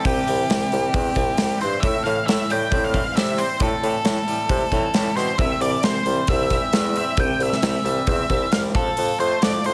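Anthemic and cathartic, this short cut from a longer quiet-loud alternative rock piece moves at 134 BPM in a straight 4/4, sitting in C major with the tuning slightly above standard pitch. An up-front, octave-fuzz lead guitar carries the melody with a dark, distorted bite, trailed by analog delay. Beneath it, a twangy electric guitar picks clean, scooped arpeggios shaded by tremolo. The bass line comes from a bassoon played in classical style, with light vibrato and a distant, roomy character that stands out against the rock setting. A big acoustic drum kit drives the track on hi-hat, a medium-tuned snare and a boomy kick, placed up front in a studio room. The mix is dry and heavily compressed for a dense, radio-ready sound, with the harmony moving from C to Am7, back to C, and reaching F at 8.8 seconds.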